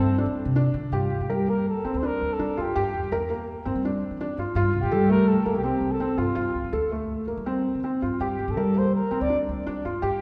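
Set in a straight 5/4 at 165 BPM, this fragment of contemporary chamber music in G dorian feels urgent yet pensive, moving from Am/G to Gm, Fadd9 and back to Gm. A mellow flugelhorn carries the melody in a classical style with light vibrato, sounding distant and roomy, while a felt-muted upright piano plays soft, intimate arpeggios up front and a pizzicato upright bass with gut strings adds a woody, thumpy low end. A wet concert hall reverb places the ensemble further back in the room, and nothing is heard above 11 kHz.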